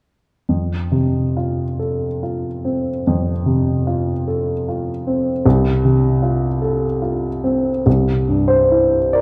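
Classical romantic nocturne for solo piano in F major, tender and serene, moving at a slow 44-52 BPM in 4/4 with a free, rubato feel. A baby grand piano with a warm, present, up-front tone plays alone from 0.5 to 9.2 seconds, ranging from C2 to D5. Its harmony rests on F, shifts to F/C at 5.4 seconds and arrives on C by 7.9 seconds, all bathed in a dark production and a wet recital hall reverb in this short passage cut from a longer piece.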